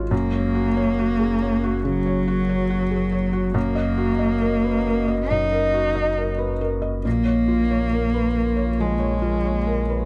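Light reverb gives this short excerpt of neoclassical piano and strings a close, intimate sound. The piece moves at a rubato 69 BPM in 4/4 in F# major, with a tender mood. A felt-muted upright piano plays the accompaniment up front, its tone soft and mellow with audible action noise and a vintage character. A muted cello enters at 0.1 seconds with a bowed second line, a single player whose dark, veiled tone carries vibrato and portamento. Underneath, a warbling, tape-like pad holds very quiet sustained chords with a lo-fi, nostalgic glow and chorus, while a saturated sub bass adds a deep, thick foundation. The harmony moves from F# to D#m/F# at 3.6 seconds and then to A#m at 7.1 seconds.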